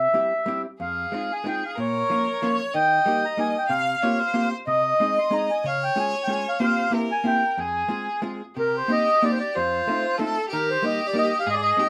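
Bittersweet and whirling, this swung musette waltz in three, cut from a longer piece, sets a reedy, up-front accordion with slow beating on the melody over a dark, clean, picked hollow-body electric guitar accompaniment, while a single distant, bowed violin with vibrato enters at 0.8 seconds on a focused second line, all in a small room, before the harmony shifts toward a new key at 8.6 seconds.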